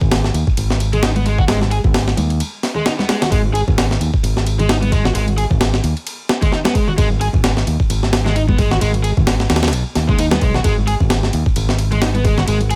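A gritty, compressed, pitched-up sampler-style breakbeat kit with a thumpy kick, medium-tuned snare and ride sits up front alongside a bright, direct fingered electric bass holding low in G# minor, driving this funky, swaggering breaks excerpt at 131 BPM with a shuffling 16th-note swing over a G#5 chord, while thick-skinned, band-limited vintage congas stay in the background and a crunchy, double-tracked overdriven guitar riff enters at 0.9 seconds with tube saturation, 12-bit sampler grit and dub echo in a dry room.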